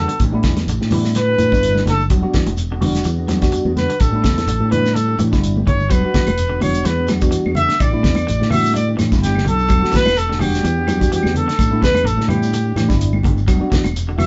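Afrobeat cut from a longer piece, funky and hypnotic at 127 BPM in E minor with a light 16th-note swing, where a clear, vibrato-laden trumpet solos up front over a cycle of A7sus4 and Em9, backed by a round, punchy fingered bass, a dry 70s drum kit with a fat snare and tight kick, a worn, slightly out-of-tune tine electric piano through overdrive and phaser, twangy picked arpeggios from a guitar at the edge of break-up, very quiet dark stabs from a clean fingered guitar, and background congas with soft hands, grainy shekere and woody claves entering at 5.9 seconds, all in a light-reverb live-room sound with a soft top end.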